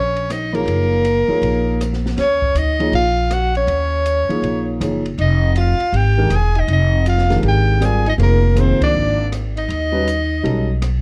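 A breathy, up-front soprano saxophone carries the melody with plate reverb in this cool, searching modal jazz excerpt at 160 BPM, joined by a bright alto saxophone second line, a growly pizzicato upright bass, an intimate baby grand piano with audible action noise, and a dark, boomy-kicked open drum kit swinging through Ebm9 and Fm9 in a moderate club ambience before a band accent at 8.7 seconds and a closing Eb7alt.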